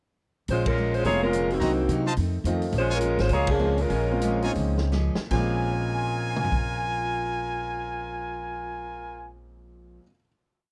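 A saxophone section carries the melody up front in four-part block harmony, its light vibrato and roomy, distant sheen giving this short, complete big band swing piece in Bb minor a brassy, sultry mood. A bright trumpet section adds tight, close-miked stabs in drop-2 voicings from 1.6 seconds, while a clear baby grand piano comps with syncopated rootless voicings, its action noise audible under a long sustain. Underneath, a woody pizzicato upright bass plays a two-feel line, a picked steel-string acoustic guitar strums four to the bar in the background with the odd finger squeak, and the drum kit keeps time on the hi-hat with dark cymbals and a punchy kick. The band hits accents together, the tempo eases back from 2.7 seconds, and a drum fill leads into a held final chord from 5.3 seconds. The sound is dry and close, in the manner of a 1970s studio session.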